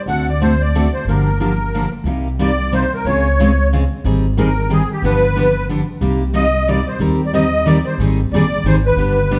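A reedy, shimmering musette accordion carries the melody up front in this bittersweet, swinging jazz manouche waltz in C minor at 182 BPM, backed by a full-bodied picked steel-string acoustic guitar and a woody, thumpy pizzicato upright bass on gut strings, all three playing together as a live band in a large studio with a wet reverb as the chords move from D7 and Gm7 into Cm7, Dbmaj7 and Abmaj7.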